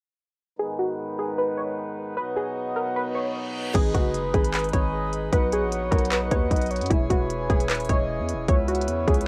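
A warbling, dusty pluck melody and a reedy, breathing pedal harmonium open this melancholic, brooding half-time trap excerpt in G# minor at 152 BPM, both softened by a low-pass filter, cassette tape grit and plate reverb as a filter sweep moves across the G#m and B chords. A reverse cymbal rises into an impact at 3.7 seconds, where a trap kit with a hard-clipped kick, crisp hats, handclaps and crash comes up front alongside a growling, buzzy 808-style bass. A breathy, flute-like synth lead with vibrato and tape echo enters at 3.9 seconds as the harmony moves through E6 and C#m7, all with the hazy feel of a home cassette recording.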